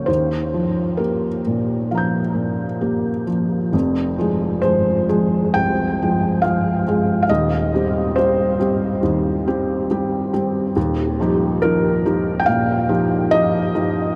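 A soft, mellow felt-muted upright piano plays alone up front, its action noise audible beneath a diffuse ambient delay, in this intimate, reflective neoclassical minimalist fragment in F minor at a rubato 67 BPM, moving through Ebadd9, Fm and Cm/Eb chords within a dreamy mix soaked in a huge reverb that carries each note long after it sounds.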